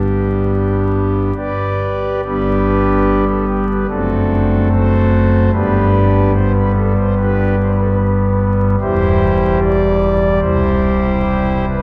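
A dark production with a vinyl crackle sets this recording in a wet cathedral space, where a long 4.7-second reverb trails each chord. A solo pipe organ plays in a serene, majestic chorale style, its foundation stops giving a thick, warm tone with romantic voicing. The organ sits up front and spans from a deep C1 to D5, filling the 11.8 seconds of this fragment cut from a longer piece. The harmony moves gently from G to D7/F# at 3.9 seconds, back to G, then to C/E and finally C at 10.4 seconds. Rubato phrasing in 4/4 lends the passage a stately, unhurried breath.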